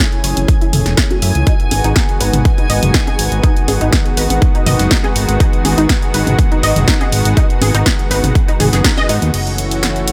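A dry, tightly produced progressive house excerpt with a dreamy, bittersweet mood, where a punchy layered kick sits up front beside a punchy snare, crash and hi-hat, a fat detuned sawtooth bass, background tape-warm electronic congas and toms, a lush chorused unison pad and a detuned sawtooth unison pluck with delay carrying arpeggios, both under filter sweeps, while a reversed granular texture drifts behind, everything apart from the kick pumping to the sidechain over F#m7 and G#m7 chords until a band accent at 8.8 seconds.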